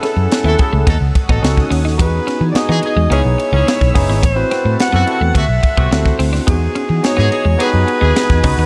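Polished 1980s jazz-funk pop at 107 BPM in E major, breezy and glossy, with a breathy, whispered alto saxophone carrying the melody through tape echo over a barky tine electric piano with analog chorus, a lush, detuned sawtooth pad and a compressed clean guitar riff tucked in the background. A crisp fusion kit with a high-tuned snare and tight kick sits up front beside a round, foam-muted picked bass that enters at 0.2 seconds, while a punchy horn section with light vibrato plays a second line from 0.5 seconds. The chords move from F#m7 through Am6 and D9 to Emaj7 under light reverb and a dark, warm production, in this short cut from a longer piece.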